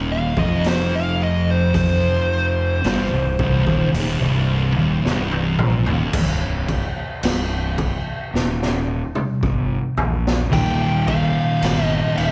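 Ominous and sludgy, this stoner-doom excerpt crawls in a straight 4/4, with a pair of thick fuzz guitars grinding a low riff in the background (one darker and carrying a slapback echo) over a growly, overdriven fingered bass that sits up front. A dark, distorted fuzz lead guitar with wah, slapback echo and analog delay cries high above from 0.1 seconds, while a raw garage drum kit, saturated and gritty with a boomy kick, high-tuned snare and rolled-off top, joins at 0.4 seconds and throws in fills. The lead returns at 10.5 seconds as the harmony moves from C minor to E-flat, and the whole thing sounds like a live club gig heard through the venue's PA, bathed in club reverb.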